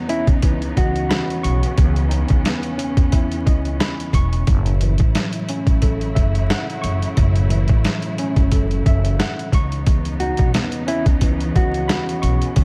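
A worn, slightly out-of-tune tine electric piano with light overdrive and a cassette-tape haze opens this moody, reflective boom-bap hip-hop excerpt alongside a lush, bowed string section holding sustained chords, while a dark, clean, fingered electric guitar touches a brief melody at 0.1 seconds and returns at 10.2 seconds, gritty, pitched-down sampler drums with a thumpy kick sit up front over a gently swung groove, a woody, growly pizzicato upright bass enters at 0.3 seconds, and vinyl crackle hovers over the whole as the harmony moves from C#m9 to F#m7 and back.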